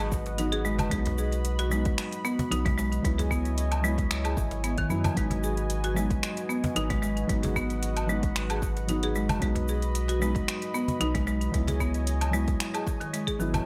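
A lightly swung 113 BPM groove from an overdriven electronic kick and a deep house kit of metallic hi-hat, cabasa, finger snaps and woodblock, with a snappy cajon in the background, drives this meditative, earthy organic downtempo excerpt. A round sine sub bass sits up front, a woody, buzzing hard-mallet marimba plays arpeggios through delay, and a dark felt-muted upright piano and a detuned, warbling analog pad pump around a G#m7, B and C#madd9 progression in light, bright 1980s-style digital ambience.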